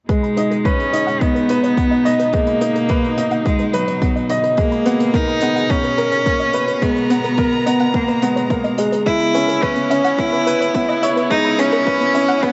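From 0.1 seconds a close, vibrato-rich cello carries the melody up front over bowed string-section chords with a sidechain pump, joined by a gentle pluck arpeggio with chorus and delay sitting in the background, a woody, boxy upright piano riff, an overdriven deep electronic kick and a dark brushed hi-hat, forming a hopeful, luminous piano and strings electronica build-up in B major at 107 BPM, with filter sweeps on the strings, pluck and cello and a lush hall reverb, in this cut from a longer piece.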